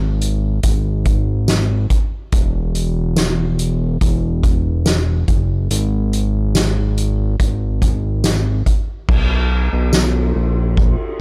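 A straight 4/4 pulse carries this ethereal, melancholic dream pop fragment, where a saturated, detuned sawtooth bass sits up front with a thick, mellow sustain in its lowest register from the start, joined at 0.2 s by a distant, roomy acoustic kit played with soft mallets, pairing a punchy kick and fat snare with hi-hat, dark ride and crash cymbals and tambourine, all in a fairly dry mix that moves into a new section at 9.1 s.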